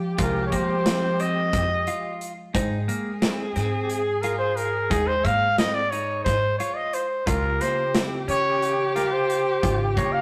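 Driving and tense, this progressive instrumental in 7/8 puts a mellow jazz trumpet solo with scooped notes and vibrato up front over a punchy big rock drum kit and a woody, dark pizzicato upright bass, while a distant, roomy alto saxophone adds a second line, a clean picked electric guitar plays tape-echoed arpeggios, and a hollow-body jazz guitar accompanies in the background as the harmony moves from Fm to Abmaj7 and then Dbmaj7, captured in a rough rehearsal-room recording with tube saturation and moderate stone room reverb.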